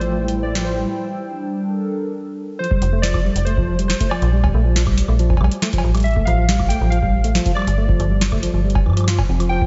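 A wistful, intricate IDM excerpt opens with warbling lo-fi synth keys carrying the melody through chorus and diffuse ambient delay, a hollow, flute-like pad holding chords, a worn tine electric piano arpeggiating under a filter sweep, an up-front FM bass with a metallic edge, a booming analog drum machine of crisp snare, hi-hat, cowbell and woodblock, and a very quiet pulsing texture that stops at the break at 0.9 seconds; the pad drops out at 2.6 seconds and a deep, tape-warm electronic kick enters at 2.7 seconds, all set in a dreamy mix soaked in lush hall reverb.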